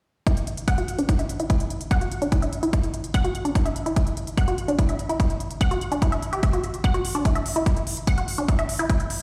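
A heavy, overdriven electronic kick drum sits up front in this hypnotic, psychedelic trance excerpt at 146 BPM in a straight 4/4, driving alongside a lush, detuned sawtooth unison pluck riff with a noise layer, cassette-tape grit, sidechain pumping and delay, plus smooth overdriven hi-hats, all from 0.3 seconds and carried by a plate reverb and the sound of a big system in a bare room.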